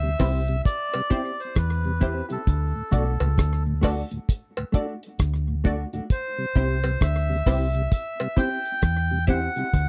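Laid-back and uplifting, this roots reggae fragment from a longer piece, swung on the sixteenths and moving between C and D chords, sets a reedy, breathy melodica melody with tape echo over a round, punchy dub bass played up front with the fingers, a cloth-damped, thuddy drum kit with tight kick, hi-hat and rim click, a mellow tonewheel organ with slow rotary speaker and chorus vibrato sitting in the background, a clean, compressed electric guitar also treated with tape echo, detuned sawtooth chord stabs with a fast-attack filter pluck and phaser, and a cowbell that drops out at 8.4 seconds, all captured in a dry, close 1970s-style studio sound.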